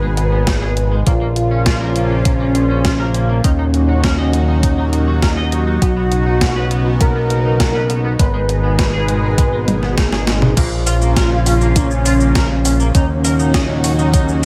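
The glossy, nasal synth bass sits up front in this cinematic, nostalgic synthwave excerpt, its pulse and sawtooth tones pumping with sidechain compression at 101 BPM in Bb phrygian, with the tuning set at A4 = 437 Hz. Above it, a thick, bold unison lead carries the melody with a dark edge, vibrato and delay. A lush, bright pad holds sustained chords, shimmering through chorus and phaser while it breathes with sidechain pumping. A twangy, clean electric guitar picks a riff further back, colored by analog chorus and tape echo. A gated 80s drum machine comes in at 0.2 seconds, its snare blooming with gated reverb alongside hi-hat, shaker, toms and crash, and an overdriven, thumpy electronic kick joins at 0.5 seconds to anchor it, with a drum fill from 9.7 seconds leading into a new section at 10.6 seconds as the chords move through Abm, Bbm, Ebm and Badd9.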